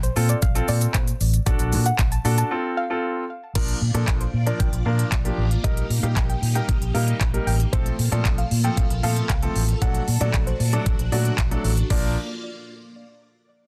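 A straight 4/4 groove at 115 BPM drives this upbeat, summery dance-pop piece in Bb major. It is cut from a longer track, and its pop drum kit of knocking kick, crisp hi-hat, handclaps, shaker and crash sits up front with a layered, tape-tinged electronic punch. Underneath, a dark, foam-muted fingered electric bass pumps with the sidechain, round and amped. A soft, rounded pluck carries the melody over a polished baby grand piano playing accompaniment from 0.2 seconds, both breathing with the same sidechain pulse, the pluck also treated with chorus and delay. At 3.6 seconds, after a short break, a lush string machine ensemble enters with soft-attack, sustained, sawtooth-based chords, treated with phaser and ensemble chorus. The mix is dry, dense and heavily limited in a modern style, with the harmony cycling around Bb, Eb/Bb, F/Bb and D/Bb.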